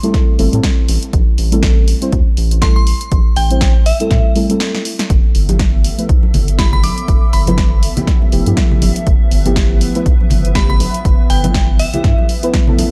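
Moody, warm deep house at 121 BPM with a swung 16th feel, this excerpt opens on Am7 with a glassy FM synth bell melody, soft mellow chord stabs pumping against a punchy layered kick, a round, dark analog bass, and tape-tinged drum machine hi-hat and snare. After a brief break and drum fill near 4.6 seconds, the harmony shifts to G13 at 5.1 seconds as a hollow, flute-like pad with ensemble chorus enters, and bright congas join in the background at 5.5 seconds. The bell carries chorus, phaser and tape echo, the stabs use chorus and tape echo, and the mix stays dry.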